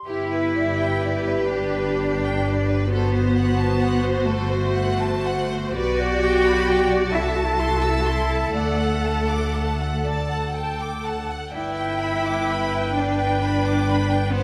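A serene, slow romantic passage for string orchestra in G major opens at once in a rubato 6/8 at around 39-45 BPM, with the rich violins singing the melody joined by a bright, lush second violin line, smooth-topped violas filling in the accompaniment, and clear, distant cellos alongside focused, up-front double basses carrying the bass, all bowed with vibrato in a moderate stage reverb, in a fragment cut from a longer movement.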